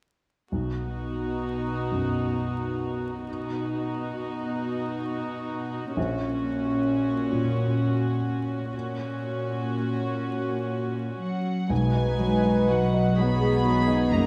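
Wrapped in the wet reverb of a scoring stage and a layer of vinyl crackle, this moving, uplifting cinematic fragment in B major unfolds in a slow, rubato 6/8, where a rich, up-front viola section bowing sul tasto, an intimate baby grand piano with audible action noise and a softly bowed cello section carrying the bass set the harmony, before a floating, pure violin melody enters at 11.2 s and, at 11.7 s, a background violin second line, mellow ringing harp arpeggios and a dark, woody double bass section join in.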